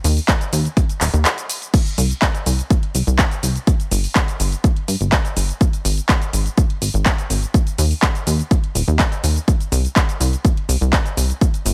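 A punchy, overdriven electronic kick drum sits up front from 0.3 seconds in this expansive, bittersweet progressive house passage in straight 4/4, cut from a longer piece, with a brief break at 1.3 seconds. Beneath it, a funky analog bass built from sawtooth and square waves pumps against the sidechain, its fast-attack filter pluck decaying in the low register. A layered house kit of cabasa, crash cymbal, handclaps and hi-hat adds grit and the air of a large room, while the overall mix stays dry and close.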